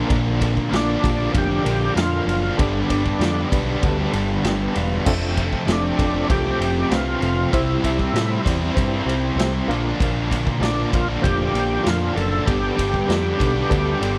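A dry cut from a longer piece of sunny, confident classic rock, built on a vintage acoustic drum kit pumping in a small room, with dark cymbals and a punchy kick, and a round, growling picked bass pushed through overdrive. Up front, a thick, gritty tonewheel organ carries the melody from 0.8 s, with key click, percussive attack, chorus vibrato and a slow rotary speaker. Three overdriven guitars play riffs in the background: one bright and double-tracked, one warm with tremolo, and one dark and sludgy. A reedy, clean electric piano with fast tremolo sits behind them and adds a short fill at 3.8 s.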